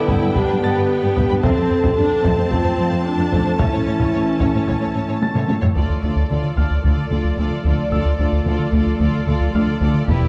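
Hard-stick taiko drums drive this tense, relentless hybrid orchestral and electronic film cue, cut from a longer piece, over lush bowed violins and violas, rich cellos, an ethereal phased pad and a brilliant, delayed piano glinting high in the background, while mellow French horns and bright trombones hold sustained chords through the opening; a drum fill at 5.2 s leads to 5.8 s, where a round analog bass riff, clear double basses and a second violin melody enter, all set in a moderate scoring-stage reverb with a dark production.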